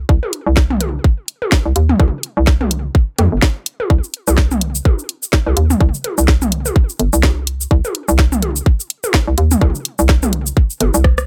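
A hollow, bouncy FM bass with a fast, decaying attack pumps under the sidechain from the start of this quirky, cool minimal techno cut in C minor at 126 BPM, joined almost at once by a tight, up-front electronic kick, delayed electronic toms with a small-room tone, and a swung garage kit of cracking snare, rim click, shaker and warm hi-hats, all in a dry mix that ends on a drum fill at 11.0 seconds.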